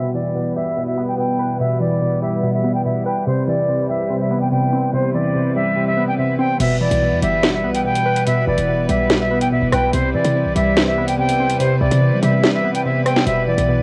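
A reedy, vibrato-laden concert flute carries the melody over glassy, detuned digital keys with a filter sweep and distant, bowed strings, moving between E minor and Cmaj7 in a cold, dark half-time drill groove at 144 BPM. A punchy, tight 808-style bass and an electronic drum kit with a sharp snare and metallic hats join at 6.6 seconds. Cassette tape colours the flute, keys, strings and drums, and a low-pass filter and light reverb soften the whole of this fragment of a longer piece.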